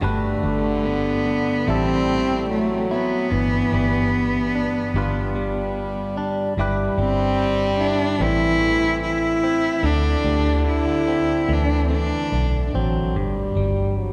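An acoustic folk-pop ballad at 73 BPM in G major, heartfelt and nostalgic, cut from a longer piece. A warm, bowed cello carries the melody up front with vibrato and portamento until 12.8 seconds, while a mellow solo French horn adds a soft-attacked second line, a bright, twangy clean electric guitar recorded direct provides picked accompaniment, and a dark, round, foam-muted fingered electric bass anchors the low end. Chords move from Gmaj7 through Am7, G7 and Cmaj7/G to D7sus4 and D5, all set in the long, wet reverb of a church or concert hall.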